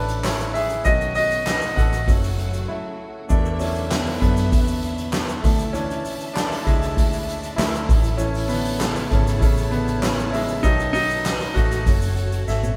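A straight 4/4 pulse at 98 BPM drives this dramatic piano-led pop excerpt, where an up-front soft-mallet drum kit with a fat snare, boomy kick and dark cymbals plays alongside a grainy shaker in the background and a round, foam-muted vintage electric bass, all played live in one lightly reverberant room. The intimate grand piano carries the solo throughout, its long sustain and audible action noise heard clearly through a short break at 2.7 seconds, while a lush bowed string section holds chords with vibrato in the background. Chords move through A, B7 and F#m to E7sus4 and Dsus2, and a drum fill at 12.5 seconds closes the passage.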